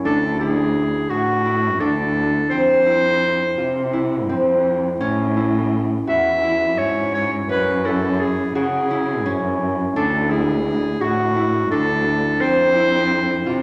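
A recital hall lends this cut from a longer chamber piece a wet, reverberant glow, with a decay of about 1.4 seconds, while the harp, clarinet and cello all sit up front. The contemporary instrumental piece moves in a straight 7/8 at 170 BPM counted in eighths, and its mood is playful and restless. The concert harp opens at 0.0 seconds with fingerpicked arpeggios that ring in a compact middle register. A moment later the clarinet enters with a bright, soft-attacked melody in a classical solo style, and the dark, bowed cello joins it on the bass line with vibrato, portamento and a smooth, expressive top. The harmony moves through Dadd9, F5, A and F#sus2 before returning to Dadd9 and F5, and all three instruments play through to 13.6 seconds.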